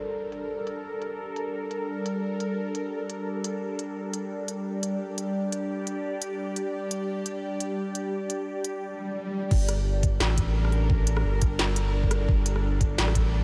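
Half-time drum and bass at 173 BPM in G minor, this dark, cinematic excerpt from a longer piece sits on a swung half-time feel and opens on a sustained Gmadd9 chord. A tense, string-like drone of detuned sawtooth voices with a noise layer carries the harmony from the first moment, fading in slowly with vibrato, a phaser and sidechain pumping, while an industrial drum kit enters at 0.3 seconds with a clanging snare, crisp hats, rim clicks and crash cymbal, all filtered and re-recorded in a large room. A faint electronic swell in the background arrives at 9.0 seconds and leads into the drop at 9.5 seconds, where a knocking, tape-warm electronic kick and a thick, saturated triangle sub bass, moving between G1 and A1 with a fast attack, come in up front. The whole mix is dreamy and soaked in a huge ambient reverb with an 8.1-second tail, giving the brooding drone and the heavy low end a vast, shadowy space.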